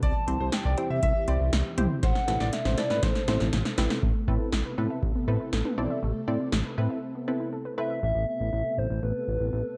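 A straight 120 BPM pulse in 4/4 drives this melancholic synth-pop excerpt in A minor, propelled by an electro analog drum machine with a deep kick, punchy snare, metallic hats, cowbell and toms that plays through a fill from 2.0 to 4.0 seconds before dropping out at 6.6 seconds, while a glossy, up-front chorused synth bass and a funky, sawtooth-edged polysynth comp keep the momentum going. A hollow, woody clarinet-like synth lead carries the melody with chorus and slapback echo, shadowed at the start by a bright, worn concert grand piano, as dark string-machine cellos sustain chords in the background and a warbling, lo-fi pluck adds nasal arpeggios from 4.0 seconds. The production is dark and lightly reverberant, moving from C to Amadd9 before a short break leads into the final section.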